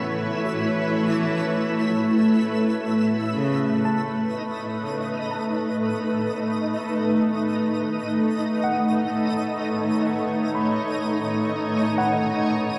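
Weightless and peaceful, this ambient excerpt drifts at 63 BPM in a straight 4/4, cut from a longer piece and soaked in a dreamy plate reverb. A cloudy, blurred granular pad sits up front with sustained chords, its slow attack and long release letting the harmony evolve from Aadd9 to Badd9/A at 3.8 seconds. A single cello opens the recording with an intimate, airy bowed melody played sul tasto with light vibrato and a tape echo, and it stops at 3.8 seconds. Behind it, a worn, slightly out-of-tune tine electric piano fades in across the full 12.8 seconds with arpeggios and tape echo, heard in the background as if through built-in speakers. A bright granular texture adds twinkling, sparkling FM shimmer an octave up, its soft attack and ensemble chorus melting into its own reverb.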